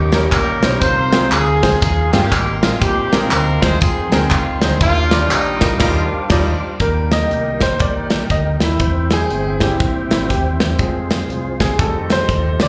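Heard through a club PA with light, roomy reverb, this short cut from a longer uptempo gospel piece moves at 120 BPM in a swung 4/4 in Eb major, its mood hopeful and soulful. A tight, up-front horn section carries the melody with a slapback echo, backed by a clear, slightly worn grand piano, a round, punchy fingered electric bass and a punchy acoustic drum kit with crash, hi-hat, kick and a medium-tuned snare. Tucked in the background, a tonewheel organ holds sustained chords through a slow rotary speaker with light overdrive, chorus vibrato and audible key click. A vintage, band-limited layer of tambourine, egg shaker and group handclaps adds a lift until about 5.7 seconds, and the band hits an accent just before the horns drop out at 6.8 seconds. From there the piano takes a solo over chords moving from Eb to C, Fm and F9, while a pure, bright flute section with soft attack and vibrato sustains chords quietly behind it.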